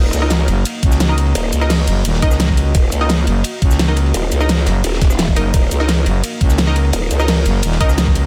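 Two up-front growling basses dominate this mechanical, aggressive stretch of dark technical drum and bass at 172 BPM in Eb minor: an overdriven, wobbling growl bass with formant-filtered bite and sidechain pumping, joined at 0.5 seconds by a thick FM growl bass, both holding on a single Ebm chord. Beneath them an overdriven dubstep kit with a huge snare and bright hats drives the straight 4/4 beat, a tape-warm knocking electronic kick enters at 0.8 seconds, and a gritty, rolled-off acoustic breakbeat kit with high-passed cymbals, hats, snare and room sits in the background. A muted filtered dub chord stab with 12-bit sampler grit, chorus and digital delay punctuates over a moody, detuned analog pad whose chords carry phaser and sidechain pumping, all under light reverb and a dense, heavily limited master in this section cut from a longer piece.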